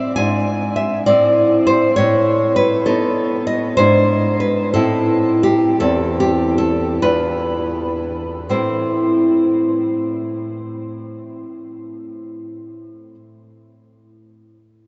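The recording sits in a vast, echoing space, with a long, wet reverb that hangs for seconds and a top end that stops near 7.9 kHz. This is a romantic piece for solo classical guitar in A minor, intimate and passionate, moving in a rubato 6/8 that drifts between 36 and 69 BPM in dotted quarters, tuned to A4 = 442 Hz. The nylon-string guitar is bright and up front, fingerpicked across a range from E2 to G#5, and it plays from the start until 13.2 s. The harmony circles through E7/G#, Am and B7/A before returning to E7/G#, Am and Am7/E, then settles on a bare E5, with the tempo slowing from 2.9 to 8.5 s. At 8.5 s a new passage opens on A minor, and the excerpt is cut from a longer piece.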